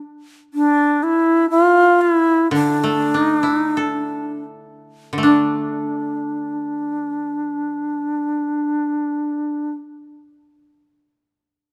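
Close, detailed microphones and light reverb frame this still, solitary fragment of traditional Japanese chamber music in a free rubato 2/4 around 37-64 BPM, where an airy, reedy shakuhachi carries the melody up front from 0.5 seconds, slowing until 5.2 seconds, while a dry, woody koto played with fingerpicks enters as accompaniment at 2.5 seconds.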